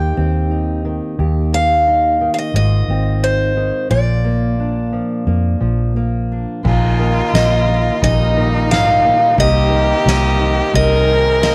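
Heartfelt and tender, this acoustic folk-pop ballad moves at 88 BPM in a straight 4/4, cut from a longer piece. From the start, a bright, boxy parlour steel-string guitar picks the melody up front, while a second, darker fingerpicked steel-string guitar fills out the accompaniment beneath it. A vintage foam-muted electric bass sits close and punchy, round and dark in tone, anchoring chords that pass from Cm/Eb through Ebadd9 and Ab6 to Bb. At 6.6 seconds a reedy, breathing harmonium slips in behind with sustained chords, and a soft-mallet drum kit joins in the background, its boomy kick, fat snare and mallet-struck cymbals carrying a big-room sound. A single clear violin enters at 6.7 seconds with an intense, biting, airy bowed second line and vibrato as the harmony turns to Bbsus4, Cm7 and Abadd9/C, all held together by a small-room ambience.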